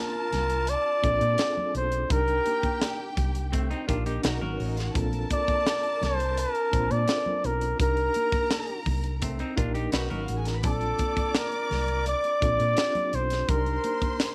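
A tight funk drum kit plays a straight 4/4 groove at 84 BPM, its punchy kick and high-tuned snare up front, alongside a round, dark hollow-body bass played with the fingers and soft-handed congas ringing in the background. This short stretch of lush 1970s-style soul has a silky, bittersweet mood, moving between Bbmaj7 and Cm7 and briefly touching Bmaj7. A breathy, mellow flugelhorn carries the melody in a jazz style, with light vibrato and scooped notes sitting at the front of the mix. Beneath it, a reedy electric piano with fast tremolo supplies the accompaniment through its built-in speakers, while a symphonic string section adds an expressive, bowed second line with soft attacks. A bright, clean semi-hollow electric guitar plays a picked riff at 3.5 and again at 9.2 seconds, and the mix sits in light reverb and small room ambience.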